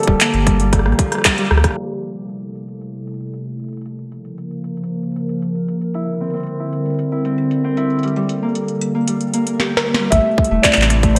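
Bathed in a lush hall reverb with a bright 1980s-style digital sheen, this glitchy, cerebral IDM excerpt in A phrygian moves at 115 BPM: a booming analog drum machine with a tonal snare and metallic hats runs throughout beside a warbling, nostalgic tape-like pad and a ringing, fingerpicked Celtic harp, while a soft felt-muted upright piano, a round sub bass and a tight electronic kick drop out early and return at 10.1 seconds, and a filter sweep fills the long middle stretch.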